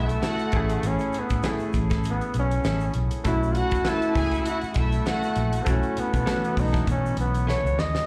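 Lush 1970s-style soul at 99 BPM in 4/4 with a light sixteenth-note swing, this bittersweet, smooth excerpt moves between B7sus4 and a rootless F#m7/A. An up-front flugelhorn sings the punchy, vibrato-laden melody with slapback and tape echo, a bowed studio violin section adds a lush second line until 5.5 seconds, and a clear concert grand piano with long sustain accompanies beside a bright, compressed clean electric guitar riff tucked in the background. A round, foam-muted electric bass sits up front over a dry 70s drum kit with fat snare and tight kick that closes on a fill at 7.5 seconds, a grainy, distant tube shaker sits in the background, and the band sounds like a live gig heard through a club PA with reverb.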